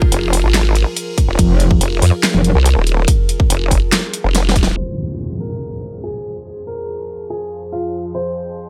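Menacing and heavy, this half-time wobble dubstep cut in F minor at 142 BPM opens on a drop with a punchy, tape-warm electronic kick, a dubstep kit of handclaps, filtered metallic hi-hats and a huge filtered snare, and a nasal, resonant vowel-sweep wobble bass with chorus and overdrive, joined briefly at 1.4 seconds by an aggressive, distorted FM wobble bass, while an evolving, morphing wavetable pad with phaser, built-in reverb and sidechain pumping sustains beneath them, until a drum fill and band accent give way at 4.8 seconds to a brilliant baby grand piano melody with delay, a downlifter and a filter sweep as the pad carries on to the end.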